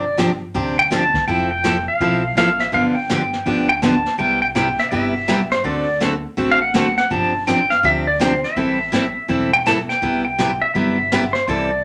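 A swung 165 BPM groove in 4/4 drives this cheerful, down-home western swing excerpt in C major, where a bright, twangy pedal steel guitar carries the melody up front with fingerpicks, slide and volume swells over a full-bodied picked dreadnought acoustic guitar, a woody, thumpy pizzicato upright bass, and a jazz brush kit with punchy kick and hi-hat that enters at 0.2 s, all set in a wet club reverb as chords like G7, Cmaj7 and Am7 roll past.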